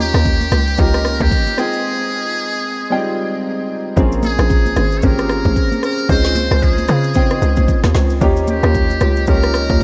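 Amapiano at 113 BPM in Bb dorian with a soulful, late-night swing, where a distant, buzzy muted trumpet sings a jazzy solo melody through tape echo over a vintage grand piano with analog chorus, an up-front hollow, bouncy log drum bass, a deep house kit of deep kick, woody snare, rim click and shaker, and bright, damped congas tucked in the background, while a dark marimba adds echoing stabs from 4.0 seconds after a brief break, all in a light, small-room ambience.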